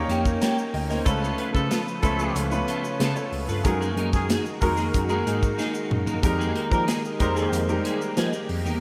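The up-front concert grand piano stands out in this polished 1980s jazz-funk pop excerpt, its natural tone and deep bass shimmering through a lush chorus as it accompanies over chords moving from Eb7 through Db7alt and Gb69 to Fm11. At 93 BPM in a straight 4/4, the mood is urban and bittersweet. A tight funk drum kit with a medium-tuned snare, tight kick, hi-hat and toms drives the groove, punctuated by a drum fill at 5.6 seconds. A worn, slightly out-of-tune tine electric piano carries the bass line through a combo amp, while a clean, picked electric guitar plays a riff colored by ensemble chorus. In the background, a silky string machine holds slow-attack sustained chords treated with phaser and chorus, a grainy tube shaker adds bright texture, and a mellow vintage horn section with light vibrato plays a second line from 1.1 to 7.6 seconds. The dreamy mix is soaked in a lush hall reverb, cut from a longer piece.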